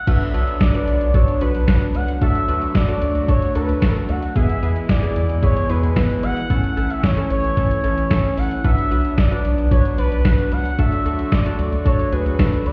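Nostalgic and upbeat, this synth-pop excerpt runs at 112 BPM in a straight 4/4. A smooth sawtooth lead glides with portamento and vibrato, its chorus and slapback echo lending a mellow sheen, over detuned square-wave keys that also carry chorus, while a reedy accordion holds dark sustained chords in the background. A round, deep analog bass and a tape-warm, sampler-style 8-bit drum machine with a thumpy kick, the drums set up front, underpin a progression that moves through Bmadd9, D, E, A, Bm and D, and the whole mix sounds muffled, as if heard through a wall, inside a stone room reverb with light digital ambience.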